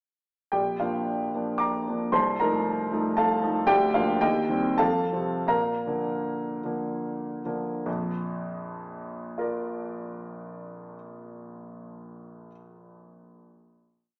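A concert grand piano carries this short, lyrical romantic character piece in Bb major, playing its tune in filled octaves over syncopated chords and a deep bass, with an intimate, up-front presence and audible action noise. The 3/4 pulse moves freely with rubato between 69 and 120 BPM, slowing from 2.9 to 7.9 seconds before a final chord that sounds until 12.4 seconds. A wet recital hall reverb surrounds the playing, though the overall sound has a small-speaker quality.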